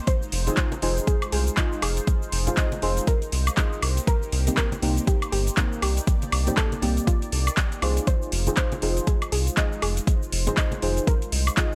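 A swung 120 BPM deep house groove in 4/4 is driven by an overdriven, up-front kick and a layered electronic kit of handclaps, metallic hi-hat, shaker and woodblock, with bright, dry congas sitting in the background from 0.5 s. A round, dark analog bass with a fast attack pumps against the kick, while a smooth, detuned pad holds sustained chords and a mellow chord stab with chorus, phaser and analog delay decays over an Fm7 to Cm7 movement in F dorian. Floating behind it all is a soft, gentle pluck melody with lush chorus and delay, giving this cut from a longer piece a deep, warm mood in a digital ambience.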